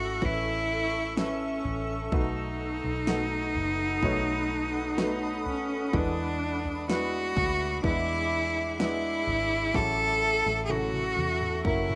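A clear, bowed cello carries the melody up front with vibrato and plate reverb in this tender, emotional pop ballad in A major at 63 BPM, moving through A, B7, E7 and A6. A woody upright piano accompanies it, a cloudy granular pad holds slow-attack chords in its own reverb and plate reverb, and a dark, foam-muted electric bass sits round and punchy underneath. An overdriven electronic drum kit with a fat snare enters at 0.2 s and plays a fill from 9.7 s, all within a rough home demo mix in moderate studio ambience.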